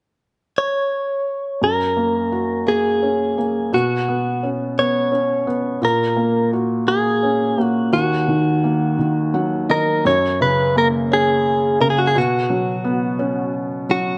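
Pop in a slow, straight 6/8 at 57 BPM, this short piece cut from a longer work feels heartfelt and romantic, set in F# major and tuned slightly flat of standard pitch. A clean, direct-recorded electric guitar carries the melody from 0.6 seconds, its picked, compressed tone sitting up front and staying within a narrow, singing range. At 1.6 seconds a felt-muted upright piano joins as accompaniment, soft and mellow with an intimate closeness, its thin felt and audible action noise adding a close, tactile character. The harmony moves through gentle open chords such as F#add9, Bsus2 and D#m, and the piano offers a brief fill just before the closing section at 10.1 seconds. A moderate plate reverb gives the pair a soft halo, while the rolled-off top end keeps the whole sound dark and tender.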